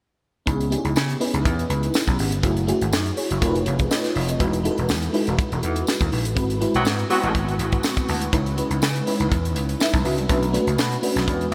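A lush, chorused FM electric piano with a soft pad layer, a punchy vintage slap bass and a tight, dry funk kit with a high-tuned snare all start together at 0.5 s, setting a slick, nocturnal 1980s jazz-funk pop groove with a light swing. A very quiet, jingly tambourine sits behind them, the electric piano adds short fills, and a mellow horn section doubled in octaves slips in briefly at 6.7 s during a band accent over an altered dominant chord. A huge ambient reverb soaks the whole mix in a dreamy haze, and the clip is cut from a longer piece.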